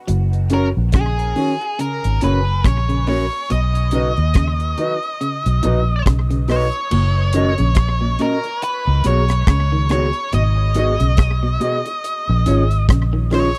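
Laid-back and uplifting, this roots reggae excerpt in F# major at 70 BPM, with a swung sixteenth feel, sets a round, punchy foam-muted bass and a deep, dry drum kit with tight kick, rim click, hi-hat and dark crash up front, while a twangy, slightly broken-up guitar plays arpeggios in the background, a mellow clean electric guitar accompanies through dub echo, and an octave-fuzz lead carries the melody with distortion and dub echo from 0.5 seconds, all in a small, dry, close 1970s-style room as the chords move from F# and B to F#6, C#7sus4, G#m7 and A#m7.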